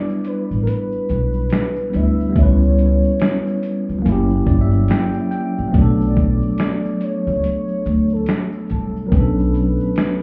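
A bell-like tine electric piano with cassette tape colour and a velvety synth lead carrying the melody through chorus and analog delay open this reflective, hazy lo-fi hip hop excerpt in B minor at 71 BPM with a 16th-note swing, joined by a very quiet grainy tube shaker, a gritty, compressed sampler-style drum kit with thumpy kick, snaps, hi-hat and snare from 0.2 seconds, and a woody, growly pizzicato upright bass from 0.5 seconds, the electric piano adding a fill from 4.0 to 5.7 seconds over chords moving from G6 through C#m7b5 and F#7b9 to Bm9, all heard muffled as if through a wall, with club reverb and vinyl crackle.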